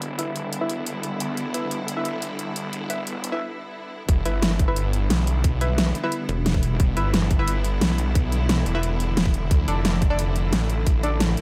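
Set in a digital ambience, this tense, mechanical clip of dark technical drum and bass drives a snarling, detuned sawtooth bass and an overdriven dubstep kit with a huge snare and bright hats beneath lush, biting bowed strings pumping with the sidechain and muted, deep dub chord stabs steeped in tape echo, building through a filter sweep on the stabs and a brief break before the drop at 4.1 s brings in a tight electronic kick, with a mellow, pulsing pluck wobble bass surfacing briefly at 6.3 s.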